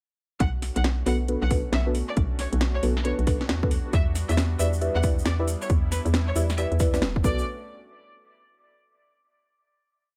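A dry mix opens this moody, soulful UK garage piece at 136 BPM in B minor, where a hollow, bouncy FM bass with sidechain pumping and a tape-warm two-step kick play alongside a swung house kit of cracking snare and metallic skipping hats, while a clear chamber violin section repeats a biting riff through dub echo over a detuned sawtooth pad with chorus and tremolo. Deep nasal chord stabs join at 1.1 seconds, moving one shape in parallel across Bm7 and Em7, and a grainy hand-played shaker enters at 3.9 seconds before a final hit at 7.5 seconds.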